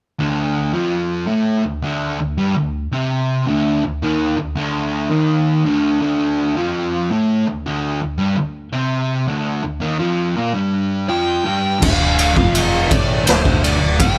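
Ominous and brooding, this stoner and doom metal excerpt moves at 83 BPM in D phrygian, opening with a double-tracked, up-front fuzz guitar grinding out a low riff on a D minor chord. A dark, compressed fuzz lead guitar with wah enters at 11.1 seconds with a high melody, and at 11.8 seconds a growling, overdriven picked bass and a raw garage drum kit join, the kit gritty and saturated with a punchy kick, a medium-tuned snare, crash and ride cymbals, and a rolled-off top. The band sounds like it is playing live in one room with light reverb.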